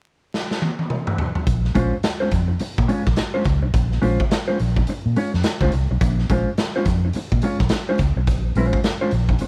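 The groove sits at 106 BPM in 4/4 with a 60% sixteenth-note swing, a sly, funky cut from a longer piece in Bb minor, tuned to A4 = 444 Hz, opening with a drum fill at 0.3 seconds on a raw, gritty garage kit of hi-hat, punchy kick, medium-tuned snare and toms, saturated and up front in a bright, pumping stone room with a rolled-off top. At 1.5 seconds a vintage muted fingered electric bass enters, dark, amped and round from Bb1 to Bb2, as the harmony settles on a Bbm9 chord. A mellow, clean electric guitar joins at 1.7 seconds, compressed and up front with analog chorus between Ab3 and Db5, all over a dry mix dusted with vinyl crackle.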